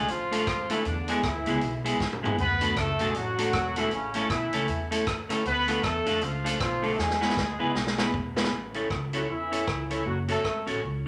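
Ska with an upbeat, joyful swing, this brief cut from a longer piece moves along with a bouncy eighth-note lilt. A clear, vintage-tinged horn section carries the melody as a pop-style ensemble, with vibrato and octave doubling placed up front. A clean, picked electric guitar supplies the accompaniment, its warm tone bathed in spring reverb, while a woody, pizzicato upright bass on steel strings holds down the low end. A swinging big-band kit with a punchy kick, a medium-tuned snare, rim clicks, hi-hat and toms sounds natural and roomy, adding drum fills around 2.0 and 7.0 seconds. The harmony shifts through chords such as Dm, E, D and A before the closing passage settles toward F#m, all wrapped in a wet studio ambience.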